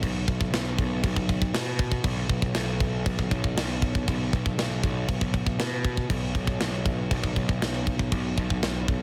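A straight 4/4 pulse at 118 BPM drives this relentless, dark heavy metal fragment, cut from a longer piece, with a tight acoustic drum kit up front: crash cymbal, a medium-tuned snare and a tight kick treated with soft clipping. Beside it, a picked electric bass growls, punchy, through overdriven fuzz between B1 and B2, both parts playing from 0.0 to 9.0 seconds. The sound is dry, with a dense, heavily limited modern master.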